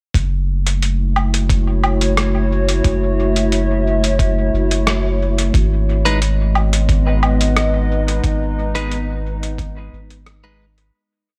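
A meditative, deep ambient dub piece in F# dorian, moving at an unhurried 89 BPM in a straight 4/4 groove that runs from start to finish. Up front, a soft, round sub bass holds long gliding notes low in its range, while a warbling, nostalgic tape-like pad drifts in at 0.7 seconds with slowly shifting chords, its detuned, vintage tone softened by chorus and its own reverb. Underneath sits a muffled, thumpy electronic kick, pitched down, overdriven and kept in the background, paired with a sparse, lo-fi sampler-style kit of closed hi-hat, rim click and low woodblock that trails off into dub echo. At 6.1 seconds a dark, clean electric guitar adds sparse picked chord stabs, one shape moved in parallel and thrown into dub echo, over the G#m harmony that replaced F#m7 at 5.5 seconds. The whole piece sits in light digital ambience, and a fade-out from 7.3 seconds carries it to its close at 10.9 seconds.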